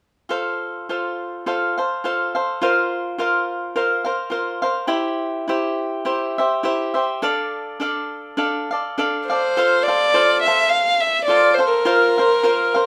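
A gently swung eighth-note feel in 4/4 carries this short fragment of Mexican folk in the mariachi tradition, with a festive yet romantic mood. A crisp, picked acoustic cavaquinho sits up front from 0.3 seconds, playing the accompaniment through chords of F, Bbsus2, C and D minor. At 9.3 seconds a single bowed violin enters with the melody, played sul tasto with a soft attack, light vibrato and an airy, intimate bow tone that feels close and warm. The violin rides a little louder than the cavaquinho as the music moves into its second section, where the harmony returns to F and Bbsus2. A wet small-room reverb adds a touch of space around the parts.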